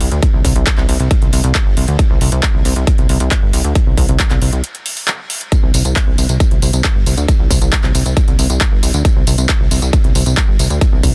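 Euphoric and soaring, this uplifting trance excerpt drives along at 136 BPM in a straight 4/4, built on a plucky analog bass whose sawtooth and pulse-wave tones snap with a fast attack and decay, funky and evolving under sidechain pumping. A punchy, layered electronic kick sits up front from 0.2 seconds, while a big-room dance kit adds handclaps, tambourine and metallic hi-hats, with a brief break between 4.6 and 5.5 seconds. The sound is dry, dense and heavily limited in a modern master.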